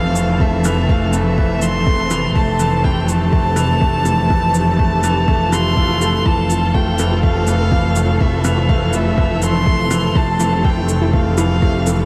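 Hopeful and luminous, this short cut from a longer piano and strings electronica track moves in a straight 4/4, floating through a dreamy mix soaked in a huge ambient reverb. A bright, slightly detuned upright piano plays a present, woody riff with audible action noise and delay. Behind it a muted, con sordino string section holds veiled sustained chords, while a rich chamber double bass section, bowed and up front, anchors the low end on F with sidechain pumping. A distant, dark violin carries the melody with vibrato and delay, as a soft electronic kick drum and a produced shaker keep the pulse. A very quiet electronic swell enters at 5.5 seconds, and from 6.3 seconds a punchy, warbling unison pluck adds arpeggios in the background, its filter sweep colored by pumping and delay over chords alternating between Fmaj7 and Am7/F.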